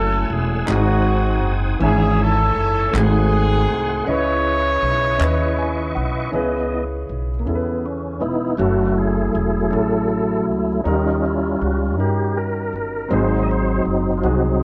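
Slow gospel in 6/8, solemn and fervent, taken from a longer piece. A tight, punchy horn section carries the melody up front with light vibrato, while group handclaps add crisp, close percussion through the opening bars. Underneath, an intimate grand piano accompanies with audible action noise, a tonewheel organ holds sustained chords with key click, fast rotary speaker and chorus vibrato, and a woody pizzicato upright bass anchors the low end. During a short piano fill, the horns drop out, and at 6.3 seconds the organ takes a solo through to the end. Light reverb and a worn, warbling cassette-tape quality with pitch drift give the recording an aged sound.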